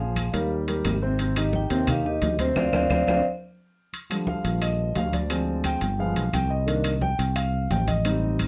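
An intimate concert grand piano with audible action noise takes a solo at 3.9 s, when this lively, danceable Afro-Cuban jazz clip settles into Eb major at 175 BPM in a straight 4/4, after a dark, metallic vibraphone melody that stops at 3.2 s and a band accent with a drum fill, all over a growly, punchy fretless electric bass up front, bright background congas, woody claves and compressed, saturated metal-shell timbales in a dark, warm studio room.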